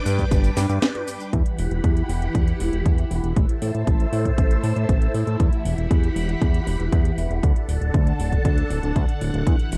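A straight 4/4 italo disco groove at 118 BPM is driven by a punchy, up-front electronic kick and a house drum kit of cracking snare, metallic hats, cabasa and toms, with a band accent and brief break at 0.8 seconds before the main section settles in at 1.3 seconds. Underneath, a fat, detuned sawtooth analog bass sits thick and saturated in the low register, while a swirling, bright string machine, treated with ensemble chorus and phaser, holds slow-attack sustained chords moving from G through Emadd9, Am and D. The dry, close, tape-touched 1970s-style sound gives this danceable cut a bittersweet glow.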